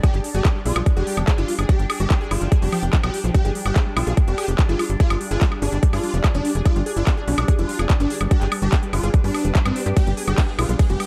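Driving and psychedelic, this short psychedelic trance excerpt runs in a straight 4/4 with a dark, digital production. A punchy, layered electronic kick sits up front beside a tight, sawtooth-edged sequencer bass with a ring-modulated, plucky bite, while a techno kit of handclaps, smooth hi-hats, ride cymbal and woodblock adds overdriven grit and studio reverb. Over this, a swarming, aggressive rave lead carries the melody with a pitch-rise attack, bright detuned unison, chorus, phaser, digital delay and sidechain pumping. In the background, a lush unison pluck repeats a riff through digital delay, and a resonant drone with moving overtones holds sustained chords through chorus, phaser and its own reverb. A cloudy, blurred granular pad hovers very quietly above, and a metallic, wobbling FM bass slips in barely audible from 4.7 to 6.3 seconds.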